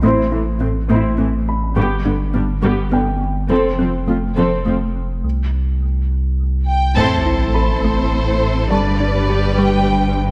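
Set in a moderate concert hall reverb, this brooding, tense cinematic cue blends orchestra and electronics in 6/8, cut from a longer piece. A filtered viola section, up front with portamento, and a close, expressive cello section carry the harmony over a deep, round sine sub bass, while a dark, tine-like FM synth pluck spins chorused, echoing arpeggios in the background and a short-sustain grand piano adds faint delayed texture above as a filter sweep builds. A lush, smooth-topped violin melody enters at 6.7 seconds, and at 7.0 seconds a focused second violin line, very quiet taiko hits on heavy sticks and a huge sub drop mark the impact.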